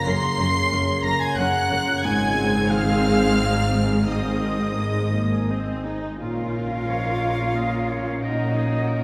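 A full orchestra opens at once on a Gbmaj7 chord: a rich violin section carries the expressive, soft-attacked melody with vibrato, while a bright, airy flute group, a distant, roomy solo oboe and a second, background violin section add supporting lines. Beneath them, a very quiet concert grand piano lends deep bass and natural accompaniment, a mellow French horn section holds sustained chords, and a concert harp rings out fingerpicked arpeggios. At 0.1 seconds the lower strings join, with lush violas filling the middle, a background cello section sliding with portamento on the bass, and a close, even double bass section anchoring the bottom. This is a cinematic, emotional film-score moment in Bb minor and 3/4, moving freely in rubato at roughly 84-92 BPM, and its mood is bittersweet and moving. The harmony shifts to Ab at 2.0 seconds and settles on Bb minor as a new section begins at 6.2 seconds, all bathed in a wet church reverb that gives the cut-off passage a spacious, hall-like glow.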